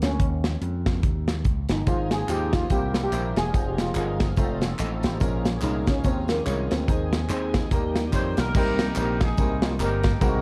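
Uptempo gospel with a jubilant, hopeful swing, cut from a longer piece, opens with a shimmering steel pan melody over punchy slap bass with an envelope filter and an up-front drum kit, joined at 1.9 s by clear grand piano, a very quiet tonewheel organ with fast rotary and key click, faint reedy strings, and distant tambourine and handclaps, before a distant horn section with tape echo takes the melody at 8.1 s, all in a dark small-room sound.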